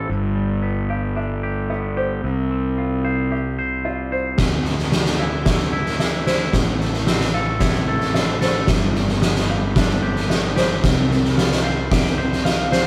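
An oversized, low-tuned drum kit dominates this cathartic, cinematic post-rock passage, entering at 4.4 s with a boomy kick and a fat, gritty, saturated snare that sits up front in a bright stone room. Before that, a fuzz-drenched fingered electric bass, punchy and overdriven, anchors the low end while a twangy, clean, picked electric guitar and a soft, felt-muted upright piano spin arpeggios together. The piano stays boxy and intimate in the background, with its action noise audible beneath its mellow tone. At a straight 112 BPM in 4/4, the harmony cycles through G7, Csus4, Dmadd9 and Am. Just as the excerpt closes at 12.4 s, a dark, clean lap steel guitar slides in on a single high F5, shaped by volume swells. The band plays live in one stone-walled room, and its moderate reverb of about 1.1 s surrounds the whole.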